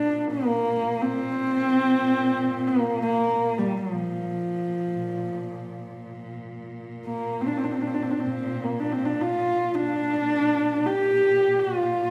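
A dark, husky horsehead fiddle carries the melody throughout this brief 12.1-second fragment of Mongolian folk music, a single bowed player whose horsehair strings give a woody, up-front voice shaded with vibrato, portamento and a soft attack. Beneath it, a lone cello holds a low Bb2 drone at a much lower level, its sul tasto bowing airy and intimate with a smooth top. The music moves at 82 BPM in a straight 4/4 within a Bb gong mode, the fiddle's line ranging from F3 to G4. The mood is proud and vast, and the recording sits in the recital hall reverb of a church or concert hall, while the fiddle also carries a somewhat distant cast. Cut from a longer piece, it stays within a single section from start to finish.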